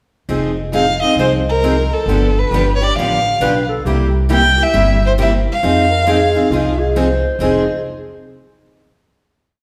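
A warm, bowed violin leads this fiery, virtuosic acoustic string swing piece in F minor at 135 BPM, playing a free, expressive melody up front with vibrato and portamento from 0.8 seconds. Two picked steel-string guitars keep time beneath it: one is bright with finger squeak and short accents on two and four, and the other sits quieter in the background. A woody, growly pizzicato upright bass plays two-beat root-and-fifth lines with walk-ups, and from 3.4 seconds a mellow, vintage clarinet with subtone adds answering phrases in the melody's rests before the piece settles on a final chord in a reverberant recital hall.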